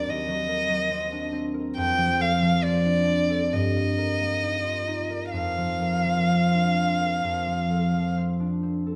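Rubato 4/4 at 62-73 BPM carries this lyrical, romantic classical duo, in which a single bowed violin sings an expressive, up-front melody with soft attacks, vibrato and portamento over ringing, fingerpicked concert harp accompaniment that moves from Cm7b5/Eb through F, Eb/G and Fsus4 before the violin stops at 8.1 s and the harp sounds alone until 9.0 s, all set in a moderate recital hall reverb.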